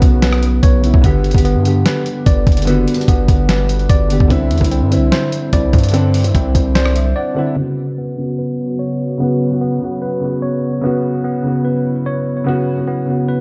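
A half-time trap beat at 147 BPM in B minor opens this dark, menacing hip hop excerpt, driven by a gritty sampler-style kit with a thumpy kick, fat snare, rim click and hi-hat, under a distorted, saturated 808-style bass. A boxy, low-passed concert grand with audible action noise carries the accompaniment over Bsus2, G and Cadd9, while a worn, slightly out-of-tune electric piano plays delayed arpeggios and a very quiet, warbling tape-like pad sustains nostalgic chords beneath. The drums and bass drop out at 7.1 seconds, just before a break at 7.2 seconds, leaving the keys and pad under a filter sweep from 7.6 seconds to the end.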